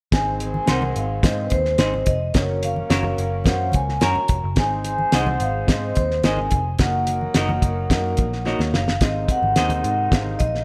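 A thuddy, cloth-damped drum kit sits up front in this danceable 1960s-style soul excerpt, its fat snare and tight kick anchoring a straight feel beneath a ringing, airy vibraphone melody played with soft mallets and a slow motor vibrato. A dark, round picked electric bass, a woody upright piano with audible action noise, clean semi-hollow guitar stabs touched with spring reverb, and very quiet, low-tuned congas fill out the band, while a mellow horn section in octaves carries a smooth second line in the background. A drum fill at 8.5 seconds leads into a brief new section at 9.0 seconds, with the whole mix set in light reverb.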